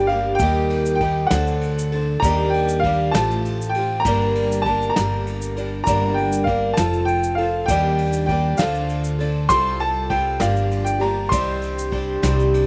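A clear upright piano carries a high, long-sustaining melody over a shimmering, octave-doubled twelve-string acoustic guitar and a woody, thumpy pizzicato upright bass, opening a haunting, intimate acoustic folk passage in a slow 6/8 at 66 BPM, cut from a longer piece. Dark, smooth brushes on kick drum, ride cymbal and snare enter at 0.1 seconds, and a grainy tube shaker follows at 0.4 seconds. The chords drift through Eb, D7 and Ebmaj7 toward Gm and close on Cmadd9, with a dry sound captured outdoors.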